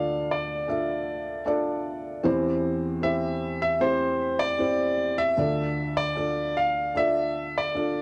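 This pop piano piece in D minor moves at 77 BPM in a straight 4/4, with an emotional, melancholic mood, and is cut from a longer work tuned to A4 = 444 Hz. A clear concert grand piano sings the melody between C5 and F5, its polished, present tone holding deep bass and long sustain. Beneath it, a felt-muted upright piano plays the accompaniment from D2 to E5, soft, mellow and dark with a boxy character. Both pianos sit up front and intimate with audible action noise, and each passes through cassette tape and plate reverb. The harmony moves from Dm to C/E at 2.3 seconds and returns to Dm at 5.4 seconds, all within a moderate studio room and the grain of a home cassette recording.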